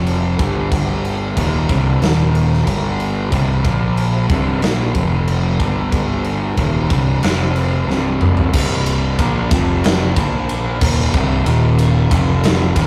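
A straight 4/4 groove carries this sludgy, hypnotic stoner and doom metal passage, where a double-tracked, picked fuzz guitar riff sits up front over a growly, overdriven fingered electric bass, while a big acoustic rock kit with a punchy kick, medium-tuned snare, crash, ride and toms in a bright stone room plays a fill from 7.9 to 8.5 s into a new section, all caught as a rough rehearsal-room recording with tube saturation and moderate booth ambience.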